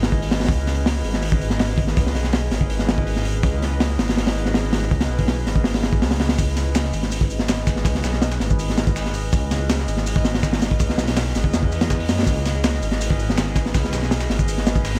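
Nostalgic yet frenetic, this drum and bass and jungle excerpt runs at 163 BPM in C# minor, resting on a single C#m9 chord as a warbling, lo-fi pad with chorus and built-in reverb sustains mellow chords over a deep, rumbling detuned saw bass whose tube saturation keeps it dark and up front. A crunchy, punchy breakbeat kit with a high-tuned snare and rolled-off top drives the track in a small room, while from 6.4 seconds a dusty, sampler-style kit with a fat snare, shaker and high-pass filtering sits gritty and compressed in the background.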